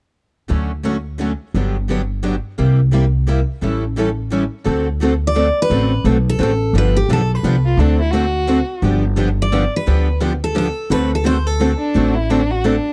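This is a charming, swinging slice of acoustic string swing in the jazz manouche style, moving briskly at 173 BPM in 3/4 with a light eighth-note swing. Two picked steel-string guitars carry the accompaniment throughout: one full-bodied and up front, the other sitting in the background with fresh strings and audible finger squeak. An upright bass plays pizzicato on gut strings, with a woody, dark and thumpy tone placed up front in the mix. The harmony begins in D major over Dmaj7, Gmaj7, C7 and A7, then turns to D mixolydian with D7 and G7 changes, and a bright picked guitar melody enters at 5.3 seconds. A single bowed violin adds a warm second line at 7.7 and 11.8 seconds, with vibrato, a soft attack and expressive portamento. The sound is dry and intimate, like a close 1970s studio recording.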